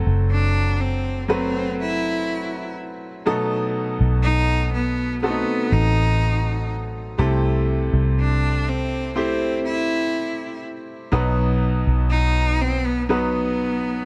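A clear, focused single cello carries the melody in this melancholic, emotional pop ballad excerpt, bowed with vibrato and entering at 0.3 seconds over a slow 61 BPM pulse in 4/4. A bright, woody upright piano supplies the accompaniment while a vintage foam-muted electric bass sits up front with a dark, round, punchy tone. The harmony moves from F#dim through B7 and C6 to B, all set in a small room reverb.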